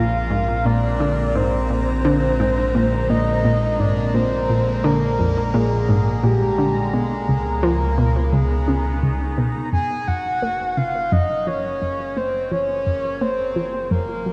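A breathy, flute-like synth lead carries the melody up front with vibrato, lush chorus, cassette tape, delay and shimmer reverb, over a round, nasal analog pluck riff, a morphing wavetable pad with phaser, an evolving pulse-width analog drone in the bass and a resonant, bubbling stepped-filter texture in the background, in an expansive, mysterious ambient excerpt at 86 BPM with a dark production in a lush hall, moving from Bb7 through Db7 to Gbmaj7 at 9.7 seconds.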